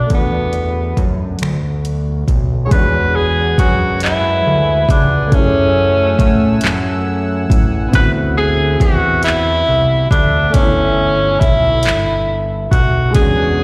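A clear tenor saxophone carries the melody up front in a jazz style, its vintage tone marked by light vibrato, scooped notes and a slapback echo. This is a slow, late-night R&B piece in 6/8 at 46 BPM, cut from a longer performance and full of yearning. A boxy grand piano with long sustain and its own slapback echo plays the accompaniment, while a fat, detuned analog bass with a plucked filter and fast attack sits thick and up front in the low end. A smooth, produced electronic drum kit supplies finger snaps, handclaps, hi-hat and a soft kick. At 2.7 s a sawtooth analog pad enters in the background, its evolving chords softened by chorus, as the harmony moves through E13, F#m9, D13 and G6. The whole band is heard as a live gig through the venue's PA, with a recital-hall ambience around it.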